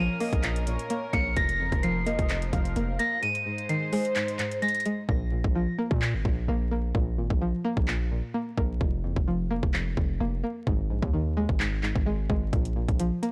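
A dark, eerie trap excerpt in Bb minor at 129 BPM with a half-time feel opens with a delicate, bell-like celesta melody with tape echo over a twangy, chorused resonator pluck, distant reedy strings and a punchy, heavy 808 bass, joined at 0.2 seconds by a velvety synth lead and a trap kit of hard-clipped kick, metallic hats and handclaps, before the celesta, strings and lead drop away by 5.1 seconds, leaving the pluck, 808 and drums, with the hi-hats muted until 12.5 seconds, in a blown-out, overdriven mix dusted with vinyl crackle.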